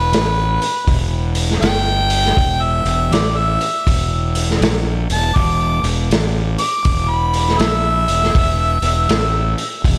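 A clear, overdriven harmonica solos through this brooding, smoky blues rock and southern rock fragment from a longer piece, its jazz-style line full of vibrato, tongue slaps and scooped notes and trailed by slapback echo and analog delay, while a growly, punchy fuzz bass and a muffled, lo-fi vintage drum kit with a tight kick and rolled-off top sit up front in a swung groove, all bathed in a lush hall reverb that gives a big arena sound.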